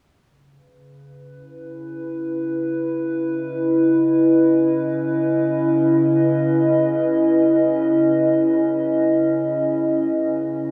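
A warbly, tape-like pad opens at 0.2 seconds, holding a single C#m7 chord in C# minor through 10.7 seconds, its slow attack, mellow wave-folded tone, chorus and long release sitting up front in the mix. This short ambient excerpt floats in free time, melancholic and reflective, with a lo-fi, nostalgic character. A wet cathedral reverb with a 7.2-second decay blends with a small room ambience to surround the sustained pad.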